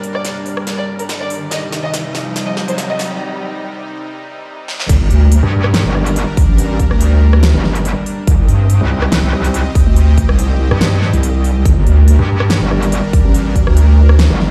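A lush, airy supersaw pad pumps under a sidechain while crisp hats, rim clicks and a huge snare from a big-room kit build through a drum fill, with a background riser, a filter sweep, and a dark, expressive violin section singing with vibrato through digital delay in the first 3 seconds. After a short break, this aggressive, heavy wobble dubstep cut in G minor at 142 BPM drops at 4.9 seconds into a half-time swing, where a punchy, up-front electronic kick and a heavy, detuned wobble bass with chorus and overdrive are joined by a metallic, bright FM wobble bass. The chords move between G minor and C minor, all of it set in a large studio reverb, as if played on a big sound system in a bare room.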